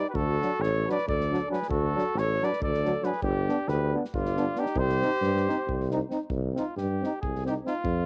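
Driven by a straight 7/8 pulse at 273 eighth-note beats per minute, this bittersweet, restless Balkan brass band passage in C harmonic minor is cut from a longer piece and moves through D, G and C minor chords. An up-front, mellow trumpet carries the melody with light vibrato over a soft-edged, distant flugelhorn second line that drops out at 5.9 s. Two clear euphoniums, one of them roomy, play the accompaniment, a punchy tuba anchors the bass, and a dark, smooth acoustic drum kit with a rolled-off top supplies kick and snare. The trumpet takes a solo from 6.3 s, and the whole has the light reverb and small-room ambience of a home cassette recording.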